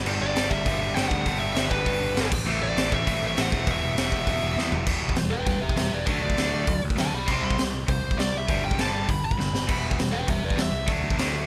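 Aggressive and angry, this short punk rock cut from a longer piece charges along at 200 BPM in a straight 4/4, centred on E minor. A raw garage drum kit sits up front, with a punchy kick, a high-tuned snare and bright cymbals, saturated and gritty in a pumping, stone-like room, and fills at 4.6 and 9.4 seconds. Beneath it, a growling picked electric bass drives the low end with an overdriven, punchy bite, while two guitar riffs stay in the background: one biting and overdriven with a warmer edge, the other distorted and brighter. A dark, high-gain lead guitar carries the melody through distortion and delay, breaking into a solo from 4.9 seconds to the end. The chords run from G through Am and Em, then on to D, C5 and back through G and Em, all under a light reverb.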